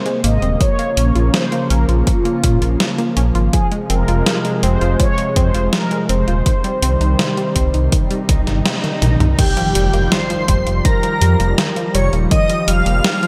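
A mellow, brassy synth melody and a smooth, warbling analog pad with sidechain pumping open this nostalgic, nocturnal synthwave excerpt, soon joined by a round analog pluck playing arpeggios in the background with gritty sampler texture, a tape-toned digital drum machine with gated reverb, a deep, rumbling detuned saw bass with sidechain pumping and a punchy electronic kick, before a swell at 8.2 seconds and a drum fill lead into an impact and an airy, dreamy second lead with shimmer reverb at 9.4 seconds.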